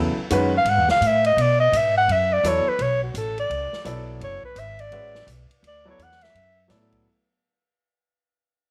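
Heard through a moderate echo-chamber reverb with small-room ambience, this brief fading excerpt of hypnotic, cool modal jazz swings at 169 BPM in 4/4, moving from C#m11 to Bm11. A breathy, dark soprano saxophone sits up front with a whispered subtone, light vibrato and scooped notes as it solos from 0.6 seconds. Beneath it, a clear baby grand piano with audible action noise accompanies, a woody, growly pizzicato upright bass anchors the low end, and a swinging big-band drum kit with boomy kick, snare, hi-hat and ride enters at 0.3 seconds.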